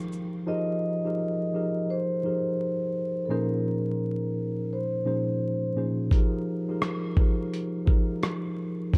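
This lo-fi hip hop excerpt moves at a relaxed 85 BPM in 4/4, with a 63% swing on the 16ths, and its hazy, nostalgic mood sits in a dark, warm production dusted with vinyl crackle and light studio reverb, tuned to A4 = 441 Hz. A mellow tine electric piano carries the accompaniment from start to finish, its worn, slightly out-of-tune tone given a cassette-tape character yet kept clean, direct and up front as it moves through Fm11, Bbm11 and back to Fm11. The sampler-style soul drum kit of hi-hat, thumpy kick, rim click and shaker sounds gritty and compressed, re-recorded in a small room and placed up front. It taps in for a brief moment near the start, then returns at 6.1 seconds to carry the groove to the end. Over the harmony, a vibraphone played with soft mallets and its motor off sings a metallic, ringing melody in a warm, mid-forward spot from 0.5 to 5.7 seconds.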